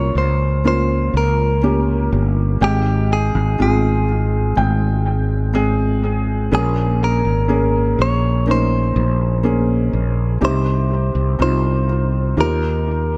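Pop ballad at a slow 61 BPM in Ab major, tuned to A4 = 444 Hz, hopeful and tender: a bright, clean, compressed electric guitar picks the melody between G4 and Db5, a soft, felt-muted upright piano with audible action noise and a boxy, intimate tone sits up front alongside it, both touched with tape echo, while a growly, up-front fretless electric bass anchors the low end, all moving through Db6, Abmaj7, Bbm7, Cm and Ebadd9 in an echo-heavy mix with light reverb, in this 13.2-second passage cut from a longer piece.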